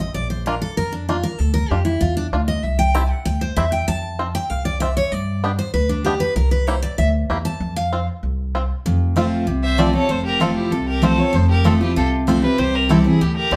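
This joyful, rustic bluegrass excerpt opens at a brisk 193 BPM in 4/4 with a straight feel in F major. A bright, full-bodied picked steel-string acoustic guitar sits up front and takes a solo, with finger squeak audible, over a woody pizzicato upright bass. At 0.5 seconds a twangy, percussive banjo played with fingerpicks enters on the melody, carrying a touch of plate reverb. The chords move through Bb, Dm, C, F, G and C, return to F, and close on C. At 9.6 seconds two bowed fiddles join: a clear lead with light vibrato and plate reverb on the melody, and a biting, distant second line beneath it. The whole ensemble sounds set back in a studio room with a short reverb.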